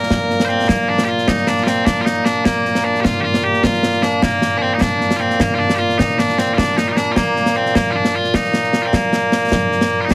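Heavily compressed with a radio-like squeeze and a light touch of reverb, this short cut from a longer piece of Scottish traditional pipe music sounds ceremonial and proud. It is set in 6/8 at 102 beats per minute on the dotted quarter with a straight feel in Bb major. Loud bagpipes carry the melody from the opening moment, their continuous, piercing tone sitting up front as a solo voice ranging from Bb2 to C5. A concert snare drum and concert bass drum join at 0.1 seconds, close and dry, with dark cymbals colouring their acoustic sound. Pipes and drums sound together through to 10.1 seconds, giving the passage a proud, ceremonial character.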